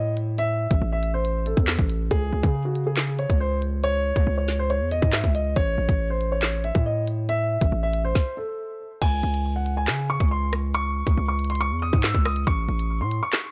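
Set in a digital ambience with every part up front, this cold, tense drill cut moves in a half-time feel, led by a dark, mellow baby grand piano melody over a distorted 808-style bass that sounds heavy and aggressive, its sine tone carrying a noise layer with a fast attack that decays. The electronic drill kit brings a hard-clipped kick, woody snare, crisp hi-hats, handclaps, rim clicks and crash cymbal, entering at 0.2 seconds. A stop at 8.2 seconds gives way to a new section at 9.0 seconds that carries the piece to its cut-off.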